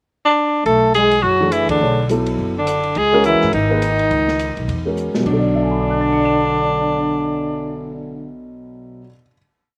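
An up-front tenor saxophone carries this brisk, searching modal jazz piece in B dorian at 208 BPM, swinging in 4/4 with warm, lightly vibrato-tinged, vintage-flavoured tone and motif-based call phrases. A close-miked trombone with soft attack and its own vibrato plays a lower second line, doubling in octaves, while pizzicato upright bass in a woody two-feel and a dark jazz kit with boomy kick, smooth ride pattern and rolled-off top drive the hypnotic pulse. A mellow upright piano enters at 1.4 seconds with syncopated quartal comping and long sustain, just before a band accent at 1.7 seconds. The harmony moves from Bm7 to C#m9, and after a drum fill the brief tune settles on a final Bm9 chord from 5.3 seconds. The sound is dry and close, captured outdoors with little reverb.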